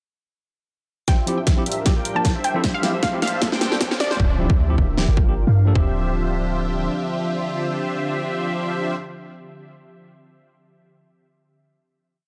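Future bass in D minor at 154 BPM, felt in half-time with a light swing on the sixteenths, this short, complete piece carries an emotional, bittersweet mood over chords that move between Dm11, Gm7 and G9sus4. From 1.1 seconds a build begins with a drum fill: a big-room kit with a huge, layered snare and rolling closed hats sits up front beside an overdriven trap kit whose hard-clipped kick and floor tom drive a half-time pulse, while a very quiet riser and impact mark the transitions. A fat, detuned sawtooth polysynth plays dotted-rhythm chords with analog chorus, tape echo, sidechain pumping and filter sweeps, alongside a clean tine electric piano that also plays dotted-rhythm chords, and a lush, warbling unison pluck repeats a short riff melody with delay until about 4.1 seconds. Underneath, an ethereal, dark pad holds very quiet sustained chords with ensemble chorus. At 4.2 seconds a deep, boomy 808-style bass arrives for the outro, following the chord rhythm under its own filter sweep, before the piece settles on a final Dm11 chord from 5.8 seconds. 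The mix has light reverb and a rolled-off top end above 10.3 kHz.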